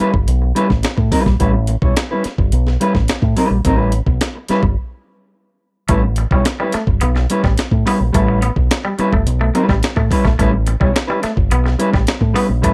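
An up-front fingered electric bass through an envelope filter drives this playful, gritty funk fragment on an A9 chord, joined by a dark, clean, fingered electric guitar and a compressed, sampler-style breakbeat kit with a thumpy kick, medium-tuned snare, hi-hat and tape-warm grit; after a break at 4.8 seconds, a bright, twangy, picked guitar riff enters lower in the mix at 5.9 seconds, all captured in a dry, close 1970s-style studio sound.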